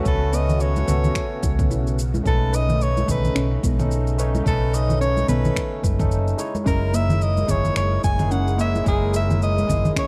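Sunset chillout at 109 BPM with a light sixteenth-note swing, wistful and warm, drifting through A69/C#, B9 and F#13 in this brief cut from a longer piece. A breathy soprano saxophone carries the jazz-inflected melody with light vibrato and digital delay, over a barky, lightly overdriven tine electric piano, a silky phased string machine and a soft, round detuned pluck playing chorused arpeggios in the background. An up-front, round hollow-body bass sits alongside a deep, tape-warm electronic kick, an overdriven layer of electronic shaker, congas and finger snaps, and soft-handed acoustic congas ringing behind, all in a dark production with light reverb.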